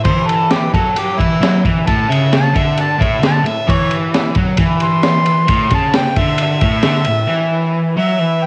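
A clear, punchy harmonica solo with vibrato and scooped notes opens this raw, swaggering garage rock cut at 132 BPM, overdriven and tape-saturated over a crunchy, gritty breakbeat kit of tight kick, high-tuned snare and dark ride that drops out at 7.2 seconds, while a double-tracked, overdriven electric guitar riff, entering at 0.1 seconds, sits up front, all caught as a lo-fi home cassette recording in a small room with light reverb.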